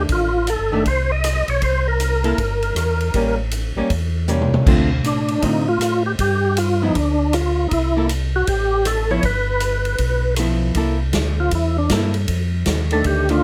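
A swung 4/4 groove at 158 BPM drives this soulful, bluesy soul jazz organ trio passage in C mixolydian, cut from a longer piece. Out front, a fat, lightly overdriven tonewheel organ with second harmonic percussion, key click, chorus vibrato and a slow rotary speaker carries the melody, moving over chords such as F13, C, A7b9 and Dm7. Beneath it, a second tonewheel organ, mellow, round and dark through its own slow rotary speaker, supplies the bass line, while a dark, clean, picked hollow-body archtop guitar fills in the accompaniment. The big-band drum kit enters at 0.1 seconds with a natural, big-room sound, a boomy kick and a medium-tuned snare, and a drum fill arrives at 4.3 seconds. At 10.8 seconds the harmony shifts to C13 and the lead organ takes a solo, heard through light reverb and close, detailed microphones.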